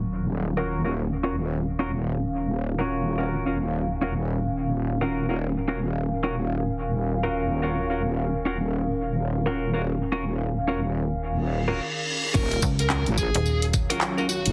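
Heavily compressed and radio-like in a moderate studio reverb, this swaggering, playful glitch hop cut moves at 108 BPM in Eb minor with a swung sixteenth-note feel. A nostalgic, lo-fi pad with a warbling tone holds an Ebm9 chord under a filter sweep, colored by chorus, phaser and sidechain pumping, above a heavy, saturated wobble bass, while a bright, twangy twelve-string electric guitar plays stabs through a low-pass filter and dub echo. A reverse cymbal leads into the drop: a layered dubstep kit with crash, handclaps, hi-hat and tambourine arrives at 12.3 s alongside a knocking electronic kick, then at 12.4 s an impact lands and a dark fuzz lead guitar carries the melody, and a snappy FM slap bass with a metallic attack joins up front.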